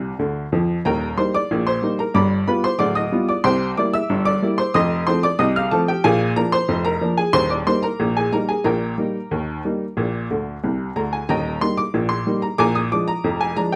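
Close, detailed microphones and light reverb put a bright, woody upright piano up front, its short sustain keeping each note crisp and natural. This is a lively, jaunty ragtime piece in Eb major at 92 BPM in a straight 2/4, played on a piano tuned to A4 = 435 Hz. The solo piano covers a broad span from D1 to F6, opening with a fill over a rootless Bb before settling onto Eb. The harmony then moves through G7, C7, F7 and Bb7 and back home to Eb, and another fill at 10.3 seconds leads into a return of the opening passage at 11.3 seconds. This short cut from a longer piece ends on a Bb7 chord.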